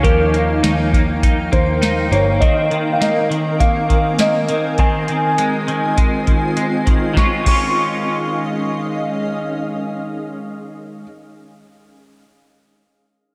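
Dreamy and blissful, this dream pop fragment drifts in a lush hall reverb, with a soft, boxy felt-muted upright piano carrying the melody through analog delay over a shimmering, detuned ambient pad that holds sustained chords. An up-front, hollow-bodied semi-hollow electric guitar picks clean, compressed arpeggios through analog chorus and delay, while a dark, round, foam-muted picked electric bass drops out at 2.4 seconds. An overdriven vintage rhythm box with a deep kick, tonal snare and metallic hats plays until 7.6 seconds, as the chords move from Ebadd9 through Abadd9 and Fm7 to Dbadd9.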